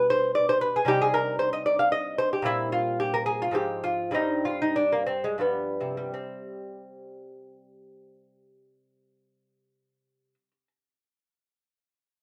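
Classical baroque-style dance in 3/4 and C minor, flowing and introspective, in which a solo fingerpicked lute with gut strings and some octave-doubled courses sounds delicate and up front in light reverb, moving with a rubato pulse between 79 and 118 BPM that slows from 1.7 to 6.1 seconds as the harmony passes from Cm through Fm/Ab and G7 to settle on C at 6.1 seconds, where a new section begins in this short excerpt cut from a longer piece.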